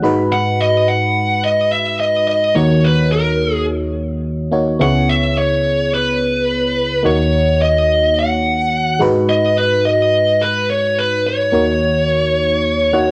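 Pop at 107 BPM with a romantic, nostalgic mood, cut from a longer piece, where a glassy, bell-like FM electric piano with chorus and phaser carries the minor-seventh chords from G#m7 through D#m7 and C#m7 and adds short fills at 0.0 and 12.7 seconds, while an up-front, dark, high-gain distorted lead guitar sings a picked melody over it, all captured as a home cassette recording with moderate booth ambience.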